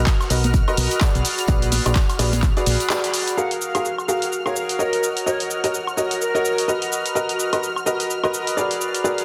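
Piano house at 127 BPM with a 16th-note swing, this short, uplifting and euphoric excerpt cut from a longer piece rides on a woody, slightly detuned upright piano riff that sits up front with tape echo and sidechain pumping, over a silky, sawtooth string pad holding sustained chords with ensemble chorus. A round, dark fingered electric bass and a layered, punchy electronic kick drive the opening alongside a tape-toned analog drum machine of handclaps, hi-hat, shaker and woodblock, which carries on through 9.2 seconds. A gritty breakbeat sampler-style kit with a high-tuned snare and hi-hat lurks very quietly beneath, while hard-hand tambourine and congas add close, dry sparkle in the background until about 3.4 seconds, just after a band accent at 2.9 seconds. From 3.4 seconds an airy, mellow silver concert flute with a crisp chiff drifts in from a distance, its straight tone slightly unsteady and trailed by tape echo. 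The harmony moves from Bmaj7 and A#7b9b13 to F#maj9, D#m7 and back to Bmaj7, all set in a lush hall reverb under a dense, heavily limited modern master.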